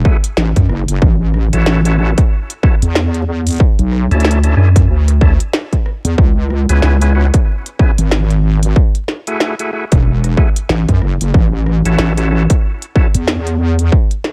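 Glitch hop at 93 BPM with a 16th-note swing, gritty and funky, built on a heavy, detuned square-and-sine wobble bass saturated through a tube and treated with chorus, a distorted, layered electronic kick up front, a clicky overdriven kit of tiny snare, rim click and hi-hats that sounds re-recorded in a small room, and lightly overdriven tonewheel organ stabs with key click, third-harmonic percussion, fast rotary speaker, 12-bit sampler grit, sidechain pumping and digital delay, moving through F#m9, A6, a rootless Bm11 and C#m7 in a dry mix coated in vinyl crackle, cut from a longer piece.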